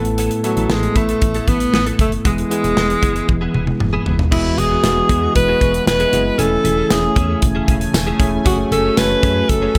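An excerpt of nostalgic, uplifting 1980s-style pop in A major at 116 BPM opens with a bell-like tine electric piano, a compressed clean electric guitar riff with ensemble chorus tucked in the background, a punchy, round FM bass, and an up-front studio drum kit with bright cymbals, tight kick and tambourine, joined at 0.4 seconds by a breathy alto saxophone melody played with vibrato. A drum fill from 3.3 to 4.3 seconds leads into the second section, where a sawtooth, wave-folded pad with slow attack, chorus and phaser rises softly behind the band. The chords move from Asus2 through Eadd9 and Amaj7/E to F#madd9 in light studio reverb.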